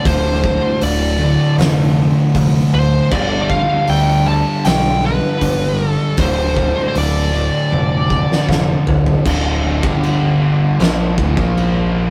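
Sludgy and hypnotic, this short cut from a longer stoner and doom metal piece crawls at 78 BPM in D minor, with two double-tracked fuzz guitars grinding out a low riff (one warm and up in the mix, the other bright and compressed in the background) over a growling, overdriven picked bass with tube saturation. An oversized, low-tuned acoustic drum kit booms through a pumping big room with a fat snare, punchy kick and dark cymbals, and plays a fill from 7.7 to 9.3 seconds, while an up-front, dark fuzz lead guitar sings a melody that stops at 8.5 seconds. The chords move from Dm to G and back before a terser power-chord turn at 9.3 seconds, all caught in a rough rehearsal-room recording with light reverb.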